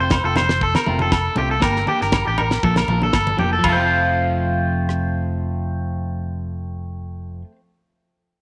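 A slightly broken-up, twangy electric guitar carries up-front arpeggios through tape echo in this sunny, danceable highlife clip at 119 BPM in F major, over a clean, scooped, compressed guitar accompaniment and a round, amped fingered bass, while a dry, damped 70s drum kit with a fat snare and tight kick drops out at 5.0 s, and background agogo bells and bright, low-tuned congas fall away by 3.9 s, the band heard in a moderate echo-chamber reverb.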